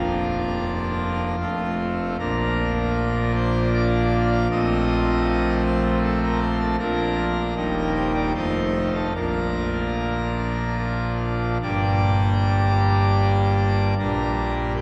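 In a stately, straight three-beat metre, this serene and majestic classical chorale unfolds on a solo pipe organ, played with full organ and mixtures in a brilliant, romantic voicing that sits up front. A long, wet cathedral reverb surrounds it, heard from further back in the room, and at 11.6 s the harmony turns from its bright major opening toward a darker minor colour. The passage is cut from a longer piece.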